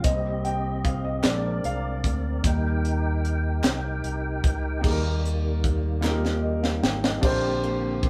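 A live band plays together in one room with light reverb in this hopeful, soulful slow gospel clip in 6/8 at 50 BPM, moving through Cm7, Bb9 and Eb before settling on Bb69. A warm grand piano, intimate enough that its action noise can be heard, takes the lead until 4.8 seconds over sustained chords from a clear tonewheel organ with key click, chorus vibrato and a slow rotary speaker. A dark, round, punchy fingered electric bass and a tight, up-front funk kit with a high-tuned snare, crash, ride and hi-hat anchor the groove, with the kit adding a drum fill from 6.0 to 7.2 seconds, while very quiet, crisp, dry handclaps sit beneath from 1.2 to 6.4 seconds.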